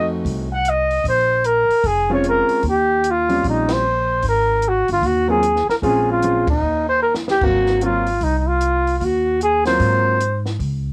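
Swinging and sophisticated, this small-group swing and bop fragment puts a soft-attacked flugelhorn with vibrato up front on the melody, while a baby grand piano with short sustain comps beneath it. A woody, growly pizzicato upright bass carries a touch of transformer saturation, and a compact cocktail drum kit adds dark cymbals, a high-tuned snare and a tight kick, with band accents at 3.6 and 6.4 seconds and a drum fill at 7.0 seconds. The whole take has the homespun character of a cassette home recording and a light reverb.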